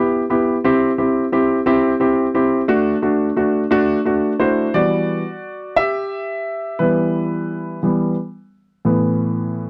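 Melancholic and dramatic, this brief pop fragment in E minor moves at 58 BPM in a straight 6/8 as a solo baby grand piano, warm, natural, short in sustain and up front in a dry, close 1970s-style studio sound, moves through Em, C and D before turning at 4.8 s to Emadd9 and settling on Asus2 at 8.8 s, tuned to A4 = 442 Hz.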